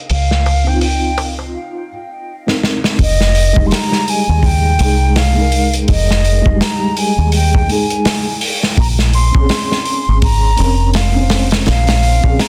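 Trip hop in F minor at 83 BPM with a swung sixteenth-note feel, this dark, cinematic excerpt is cut from a longer piece. A deep, round dub bass played with the fingers sits up front and punchy, while a crunchy breakbeat kit with a tight kick, medium-tuned snare and hi-hat adds saturated grit, its top rolled off by low-pass filtering. A soft-handed clay darbuka is heard only briefly at the start, close and dry, before a break from 1.5 to 3.0 seconds that ends in a drum fill under an opening filter sweep. A felt-muted upright piano enters at 0.6 seconds, boxy and intimate with audible action noise, carrying tremolo and tape echo. Above it a silver concert flute with a pure tone and vibrato plays the melody through vintage 12-bit sampler grit and dub echo, as the harmony moves from Dbmaj7 to Fm7 at 3.0 seconds and Bbm7 at 8.8 seconds. The small room and dense, heavily limited master keep the sound close and compact.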